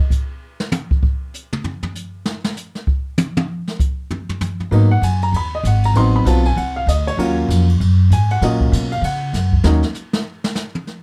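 A brushed jazz drum kit opens this cool, swinging small-group bop cut in Eb minor at 195 BPM, playing alone for the first 4.7 seconds with dark cymbals, a medium-tuned snare and a boomy kick. A woody pizzicato upright bass, prominent and up front, and an intimate, clear grand piano with audible action noise then join over Abm7, Adim7 and Ebm7 chords until 9.8 seconds, after which the brushes carry the passage alone to its end. The production is dark with light reverb and a natural studio-room feel, and the clip is cut from a longer piece.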